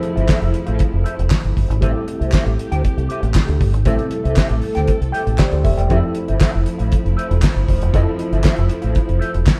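Danceable and glamorous, this short disco cut at 118 BPM in F major moves from Fmaj7 to Am7 and back, with a damped 70s drum kit up front giving a fat snare and tight kick under a rolled-off top, joined from 0.2 seconds by a deep, round fingered electric bass. A worn, slightly out-of-tune tine electric piano accompanies throughout and takes a brief fill at 4.9 seconds, while a mellow, clean wah guitar adds accompaniment and a lush, woody bowed string section with vibrato holds sustained chords behind it. A hollow group handclap sits far back, and the whole band sounds as if playing live in one room with light reverb.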